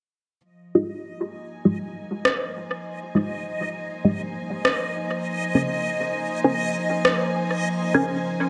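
Meditative and hazy, this ambient dub excerpt in F minor moves at 100 BPM with a swung 16th-note feel, drifting from Fm9 to Bbm9 at 5.2 seconds. A dark, intimate string section fades in with soft, bowed sul tasto chords carrying a vintage 12-bit sampler grit, while a reversed, granular texture floats alongside on a bright held Eb5 wrapped in its built-in reverb. Up front, a muted, detuned dub chord stab with a sub octave runs through phaser, analog chorus, dub echo and a filter sweep, and an electronic rim click joins at 2.3 seconds with its own dub echo, the mix sitting in a moderate echo-chamber reverb.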